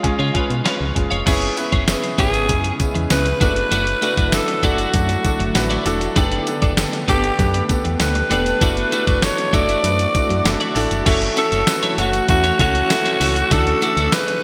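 Bright 1980s-style digital production and a lush hall reverb frame this urgent, nostalgic pop excerpt, cut from a longer piece and moving at 98 BPM in a straight 4/4. A raspy, gritty alto saxophone carries the melody up front with vibrato and a touch of delay, over a clean 12-bit drum machine whose thumpy kick, medium-tuned snare, hi-hat, crash and tambourine hits are soaked in gated reverb. A punchy, round FM bass with a dark, decaying edge anchors the low end. A polished baby grand piano supplies accompaniment, while a twelve-string electric guitar plays a compressed, picked riff through analog chorus and delay. A jingly acoustic tambourine slips into the background at 1.3 seconds, a shimmering, ethereal pad with slow attack and chorus enters beneath at 2.1 seconds, and a very quiet, glassy FM bell adds a crystalline second line from 11.4 seconds. The harmony moves from C# through E6/F#, Dadd9/F# and Gadd9/F# before settling on F#m7 and Dadd9.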